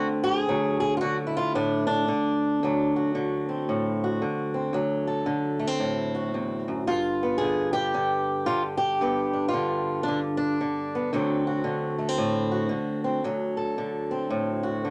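Swung eighth notes in 4/4 give this fragment of acoustic country blues a swaggering, rollicking lilt, carried by a single fingerpicked acoustic guitar that plays alone throughout its 14.9 seconds. The guitar sits up front with a warm, boxy tone, ranging from low bass notes to the upper strings as the harmony moves from D7 to G7 at 6.9 s and back to D7 at 11.1 s. A moderate studio ambience surrounds it, keeping the sound intimate and close.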